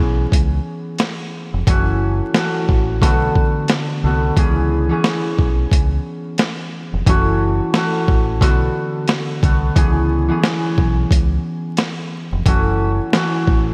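A ringing, fingerpicked concert harp and a round, punchy electric bass open this moody, dark, swung boom-bap hip-hop excerpt, joined at 0.3 seconds by a gritty, compressed, pitched-down sampler-style drum kit with a thumpy kick and high-tuned snare, with the harp and drums up front amid light reverb, vinyl crackle and bright 1980s-style digital production as the chords cycle through C#m7, F#m7 and Bm7.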